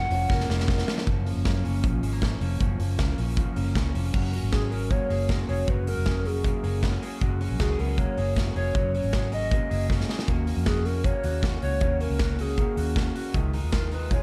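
A straight 4/4 pulse at 156 BPM drives this bright, breezy piece of jangly indie pop in F# major, cut from a longer piece. A big acoustic rock kit sits up front with a punchy kick and medium-tuned snare, crash and hi-hat, and it drops in a couple of drum fills. A vintage foam-muted fingered bass adds a dark, round, amped low end. Two electric guitars fill the middle: a picked, lo-fi part through a small old amp with subtle chorus carries the accompaniment, while a twangy, fingered, slightly broken-up guitar plays compressed arpeggios. A hollow, woody synth lead with a clarinet-like tone, chorus, vibrato and tape echo sings the melody briefly at the start and returns at 4.5 seconds, and a metallic, ringing vibraphone struck with hard mallets glints in the background from 0.1 to 1.0 seconds. The chords move from F#maj7 through F#add9 and D#m7 to C#add9, all set in light reverb within a dark, warm production.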